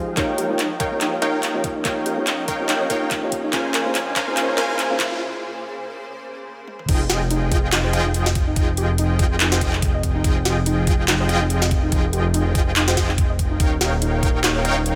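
A muffled, felt-muted upright piano opens this dreamy, emotional future bass excerpt, its mellow, boxy tone and audible action noise set beside a shimmering ambient pad and a punchy, airy supersaw stab riff, all pulsing with sidechain pumping. A soft, round pluck traces arpeggios in the background through a lush chorus and digital delay, while a knocking electronic kick and an up-front trap kit with a sharp snare, metallic hats, handclaps, toms and crash drive the half-time, lightly swung groove. During the build-up, a filter sweeps across the ethereal, granular pad and a very quiet riser sounds beneath a drum fill. The piano drops out at 5.2 seconds for a brief break. At 6.9 seconds the drop arrives, and a fat, saturated, nasal analog bass enters up front alongside the detuned supersaw and rich ninth chords through to the close, with the whole mix sitting in light reverb and a small-room ambience.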